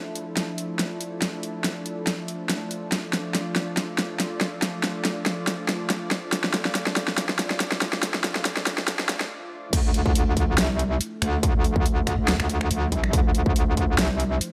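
Riding a half-time 4/4 groove at 141 BPM with a light 16th-note swing, this menacing, heavy wobble dubstep excerpt in D minor opens on a lush, detuned sawtooth pad holding a Dmadd9 chord with chorus and sidechain pumping while a tape-warm electronic kit with a huge snare, bright hats, finger snaps and crash builds through a drum fill and a brief break, until the drop at 9.7 seconds unleashes an up-front metallic FM wobble bass, distorted and overdriven, alongside a distorted electronic kick, all in a light reverb.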